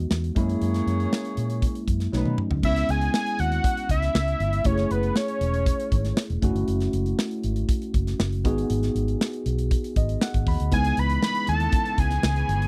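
A straight 4/4 groove at 119 BPM drives this short, glossy slice of polished 1980s jazz-funk pop with an urban feel, built on a punchy kick, medium-tuned snare, hi-hat, toms and crash from an airy, up-front acoustic kit, and a dark, round, foam-muted fingered bass. A mellow horn section with vibrato and octave doubling opens alongside a worn, slightly out-of-tune tine electric piano with subtle chorus, and the horns drop out after 2.4 seconds as a drum fill leads into the main section. A fat, warbling analog sawtooth lead with a sub octave and slapback echo takes the melody from 2.6 seconds, over chords moving through C#m7, F#m9 and G#m7. After a tine electric piano fill, the lead returns, and a swirling, phased string machine slips in quietly behind it with sustained chords at 11.3 seconds. The sound is dry and close, in the manner of a 1970s studio, with little reverb.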